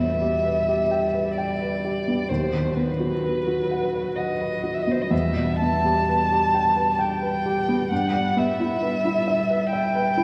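A dark, woody violin carries the vibrato-laden melody up front from the first moment, over an intimate baby grand piano with audible action noise and a soft-attacked, airy sul tasto cello line in the background, in this melancholic, elegiac slow romantic movement for piano quartet in E minor, cut from a longer piece, moving in a rubato 3/4 at 60-67 BPM through Em, B/D#, Em and Em/G, all set in a church's wet reverb with some lossy compression artefacts.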